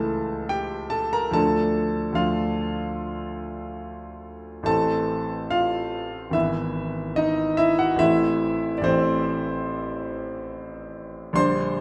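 A clear, intimate grand piano sits up front with audible action noise and a polished sound as it carries this passionate, stormy romantic character piece at 72 BPM in 4/4 with a rubato feel, ranging from G#1 to C6 and moving through A/C#, Dm, Am and E/G# before settling on Am at 8.0 seconds, all bathed in a wet recital-hall reverb with a 1.4-second decay and tuned to A4 = 442 Hz, in a fragment cut from a longer piece.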